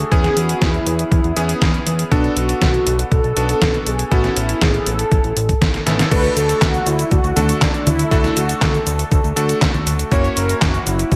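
A thumpy, overdriven electronic kick drives this playful, danceable italo disco at 120 BPM in straight 4/4, joined by a detuned 8-bit drum machine placed up front with a fat snare, handclaps, congas, cabasa, hi-hat and crash cymbal, its kit treated with gated reverb, and both drum parts re-recorded in a small room. Beneath them, a thick, saturated analog bass built from detuned sawtooth, square and sine waves carries a filter sweep, while a bright electric grand piano adds clangy, cutting stabs and a round, dark synth brass sings the melody with chorus, vibrato and digital delay. A drum fill at 5.7 s leads into a second section in D major at 6.1 s, which reaches an F#7 chord at 10.1 s in this cut from a longer piece.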